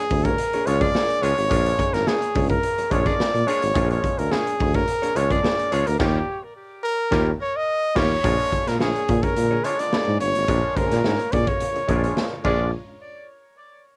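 A close-miked trumpet carries the melody with vibrato and tape echo over a strutting, energetic 107 BPM funk groove in Bb mixolydian, driven by an up-front tuba bass with light vibrato and a gritty, saturated garage drum kit with a punchy kick, while a dark hollow-body jazz guitar, a stringy overdriven clav through auto-wah and a growling, breathy tenor saxophone sit in the background, the band hits an accent from 6.0 to 8.2 seconds, and a swirling, phased string machine enters very quietly at 8.2 seconds, all colored by light reverb and the character of a home cassette recording.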